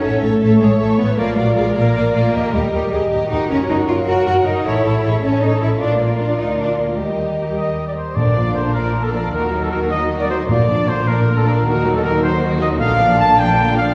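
This heroic, adventurous film-score cue in a straight 6/8 at 104 BPM opens with a very quiet, dark violin section singing the melody, while a smooth second violin line and airy flutes move alongside it, violas and mellow French horn chords sit in the background, and woody double basses join lush cellos on the bass. At 7.6 seconds a clear solo trumpet comes up front with stabs. At 8.2 seconds the harmony settles into Bb major, moving between Bb and E-flat minor, as round, soft-mallet timpani sound in the background until 11.0 seconds. A wet hall reverb surrounds the whole orchestra in this passage cut from a longer piece.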